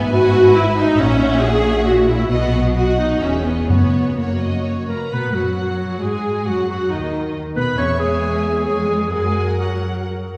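Dramatic and restless, this fast romantic orchestral movement in B major moves in 3/4 at 123-138 BPM with a rubato feel, cut from a longer piece. A rich, distant violin section carries the melody over a second violin line with a smooth top, while an expressive viola section with portamento sits close and up front, a woody double bass section and cello section share the bass, and a round timpani note sounds at 3.7 s. A warm solo clarinet adds a second line from 4.9 s, and the orchestra is heard from further back in the room through a wet scoring-stage reverb.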